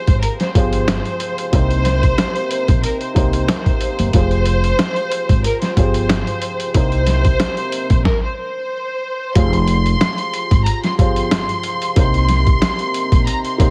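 A gently swung boom-bap groove in four drives this reflective, gritty hip-hop excerpt: a pitched-down, sampler-style kit sits up front with a thumpy kick, medium-tuned snare and hi-hat, over a woody pizzicato upright bass. A dark, slightly detuned upright piano with audible action noise and a worn cassette tone carries the Fmadd9 and Cm7 chords, while a bowed violin section sings the melody with smooth vibrato and delay, all set in a small room with a heavily compressed, radio-like sound. A stop breaks the groove at 8.1 seconds before a new section begins at 9.4 seconds.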